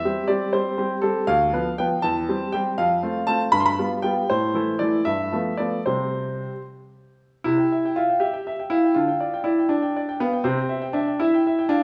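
Set in 6/8 at 80 beats per minute counted in dotted quarters, this classical-period piano sonatina moves with a supple rubato that gives it a playful, graceful character in C major, tuned to A4 = 439 Hz. A single baby grand piano carries everything from 0.0 to 11.8 seconds, its tone clear, natural and up front, ranging from D2 up to C6. The harmony opens on C and passes through a diminished chord over D, F, a G7 and A minor before settling on an open fifth on C, closing the first section at 7.5 seconds. The second section begins with a rootless C, moves to an open fifth on G over D, and returns home to C at 10.5 seconds. A wet recital hall reverb with a 1.7-second decay surrounds the instrument, and the passage is cut from a longer piece.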